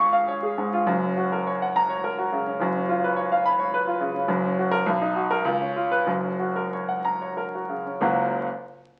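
Classical virtuoso piano study in a lilting triple metre, cut from a longer piece and carrying a heroic, brilliant mood. A clear baby grand piano plays solo from start to finish, its natural tone and short sustain placed up front and ranging from deep in the bass to bright upper notes. The phrasing moves with free rubato, and from 3.5 seconds the music slows down as the harmony passes through dominant and major-seventh colours before settling home on the tonic at 6.1 seconds. A moderate studio reverb gives the instrument a modest sense of space. The sound has the character of a very old 78 rpm record, with vinyl crackle and a muffled top end that softens the brilliance of the playing.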